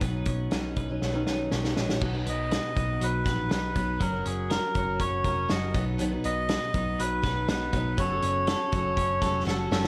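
A loose, roomy indie drum kit with dark cymbals, picked steel-string acoustic guitar, a bright, twangy twelve-string electric guitar with slapback echo and a round, foam-muted electric bass open this breezy, youthful jangly indie pop excerpt at 121 BPM, with a drum fill at 1.0 seconds before a reedy, breathy melodica takes the melody up front from 2.3 seconds over Cb, Gb and Gbm chords in a small, lightly reverberant room.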